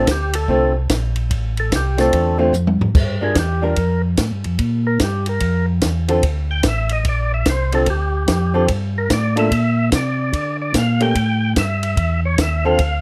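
Soulful and bluesy, this excerpt of a swinging soul jazz organ trio in D minor at 146 BPM features a percussive tonewheel organ with key click and slow rotary speaker taking the melody, a dark, hollow-body archtop guitar accompanying up front, a mellow, round tonewheel organ carrying the bass, and a dry compact cocktail drum kit with dark cymbals, a high-tuned snare and a punchy kick that plays a fill at 2.5 seconds, all in light reverb over a Dm7, Gm7, Bb and A5 progression.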